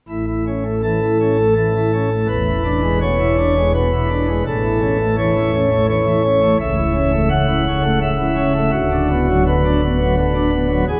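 The recording places a lone pipe organ inside a wet cathedral reverb with a long 6.7-second decay, heard from further back in the room. This classical, chorale-style passage in A major moves at 84 BPM in 3/4 with a free, rubato feel, its mood serene and reverent. The organ speaks through light, sparkling flute stops in a romantic voicing that sits up front, reaching from C#1 in the bass to F#5 at the top. The harmony moves slowly from A to E7, back to A, then to A/C# and Bm/D, one chord roughly every two seconds. Cut from a longer piece, this 11-second fragment lets each chord hang and bloom in the vast space.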